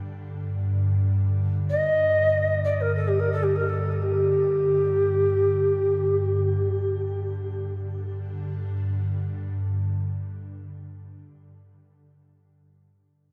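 An ethereal, detuned pad drone with ensemble chorus opens this haunting, spacious stretch of free-time world meditation music, cut from a longer piece. At 1.7 seconds a mellow Native American-style cedar flute enters with a woody, airy chiff, tongued notes and expressive vibrato, drifting through shimmer reverb and diffuse ambient delay until it falls away at 6.9 seconds. The pad lingers on alone, its long release dissolving into a wet church reverb.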